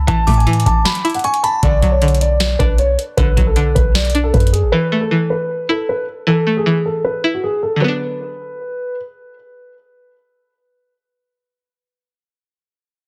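Dark and hard-hitting, this half-time trap excerpt at 155 BPM in B dorian opens with a twangy, string-like resonator pluck run through chorus, phaser and a low-pass filter, sitting over a boomy 808-style bass and a booming analog drum machine with a deep kick, crisp snare and metallic hats. A boxy, mellow concert grand piano carries the melody with long sustain and digital delay, while a faint crystalline FM bell line glints briefly near the start. The drums drop out at 4.6 seconds and the bass at 4.7 seconds, the piano stops at 8.9 seconds, and the pluck carries on alone until 12.4 seconds, all in a dense, heavily limited mix with light reverb.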